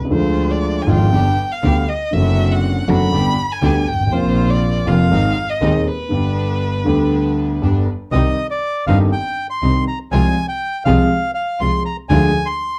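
A dark, mellow concert grand piano opens this dramatic, passionate tango, up front with deep bass, alongside a clear, biting double bass bowed by one player with light vibrato and an earthy edge. From 0.1 seconds a solo violin carries a focused second line with vibrato, while a chamber string section with gut-string tone and a period-style, reedy colour sits in the background, playing stabs. The piece moves at 120 BPM in 4/4 with a rubato feel in C minor, and the opening passes through Ddim, G, D7/F# and Ab before a break at 6.1 seconds. The violin stops at 7.9 seconds, and at 8.1 seconds a bright bandoneon comes up front with the melody over Cm and Fm/C harmony. The production is dark with light reverb, and the clip is cut from a longer piece.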